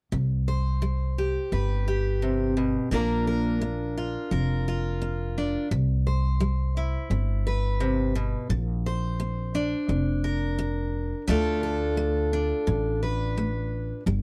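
A sunny, down-home country excerpt in a steady 4/4, cut from a longer piece, with two acoustic parts playing together from the first moment to the last at 14.2 seconds. A picked steel-string dreadnought guitar carries the accompaniment, its tone bright and full-bodied as it spans a range from low strings up into its higher register. Beneath it, an upright bass plucked pizzicato on steel strings supplies the low end, sounding woody, growly and thumpy. Both instruments sit up front in a dry, close studio sound with a 1970s character and little reverb. The harmony moves between C and Bb, shifts into a second section at 5.7 seconds, and turns toward D minor near the close.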